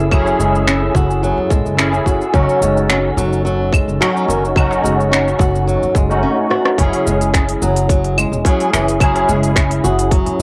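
Heard through a home cassette recording and a wet spring reverb, this hypnotic, meditative slice of organic downtempo feels intimate and hazy. A barky tine electric piano sits up front with chorus, sidechain pumping and analog delay, its tone shaped by a filter sweep through the first 6.8 seconds, while a woody, thumpy upright bass played pizzicato on gut strings anchors the low end with tube saturation. A fingerpicked flamenco guitar weaves warm arpeggios through its own delay, and a glassy harmonics texture drifts quietly in the background with slow, sustained overtones until it drops out at 6.2 seconds. The rhythm comes from a tight, overdriven electronic kick and an organic electronic kit of crisp hats, claves, finger snaps, rim clicks and shaker, both dusted with tape grit, along with a very quiet, close darbuka played with soft hands. A drum fill at 6.5 seconds leads into a new section where the harmony settles onto an open dominant colour.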